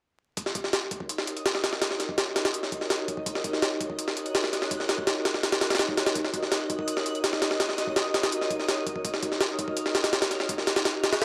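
A sampler-style jungle drum kit drives this frenetic, nostalgic drum and bass excerpt, its gritty, compressed, pitched-up break with a thumpy kick and high-tuned snare sitting up front from 0.4 seconds, while from 1.3 seconds a dreamy, reversed, granular texture glows brightly in the background over a single minor-seventh chord, all captured as a dry hardware recording with light reverb and vinyl crackle.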